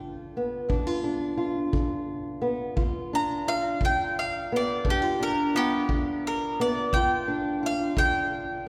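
Swaggering and laid-back, this brief acoustic country blues excerpt in 12/8 puts a round, double-strung picked mandolin up front over a dark, woody, boxy fingerpicked old ladder-braced guitar on worn strings, with a tight, distant kick drum underneath, and the mandolin steps out into a solo from 2.8 s, heard in a church with a long, wet reverb.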